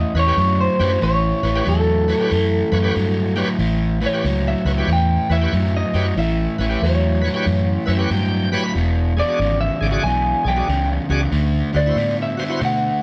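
A crunchy, overdriven guitar riff sits up front in this gritty, swaggering blues excerpt at 93 BPM in a swung 4/4 in A mixolydian, alongside a round, punchy, foam-muted fingered bass, a compressed, slightly broken-up lead guitar melody through a small old amp, and a bright, shouting tonewheel organ with key click, light overdrive and slow rotary speaker that takes a fill at 7.5 seconds, over changes from A7 to E7 at 8.8 seconds and D7 at 11.3 seconds as the band plays live in a stone room with moderate reverb.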